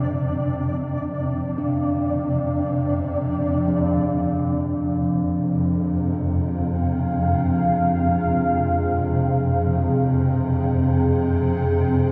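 A swarming, detuned drone sits up front through this desolate, unsettling dark ambient excerpt in free time and F dorian, joined at first by a flickering grainy texture that stops at 3.7 seconds, while a pure, ringing quartz singing bowl plays arpeggios in the background and a deep, warbling pad with chorus enters with sustained chords at 6.4 seconds, all bathed in a cathedral-like reverb.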